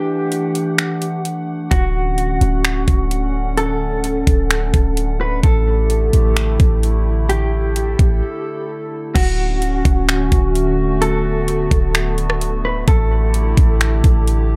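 A dark, digitally ambient mix opens this dreamy, floating cloud-rap excerpt at 129 BPM in a half-time 4/4 feel in D major, where a warbling, nostalgic lo-fi pad with chorus, reverb and sidechain pumping holds Dmaj7 and A7sus4 chords beneath a clean, fingered electric guitar melody colored by tremolo and digital delay, while an up-front trap kit of knocking kick, metallic hats, snaps and rim clicks and a deep, boomy sine 808 bass arriving at 1.7 seconds drive the groove through a brief break near 8.2 seconds.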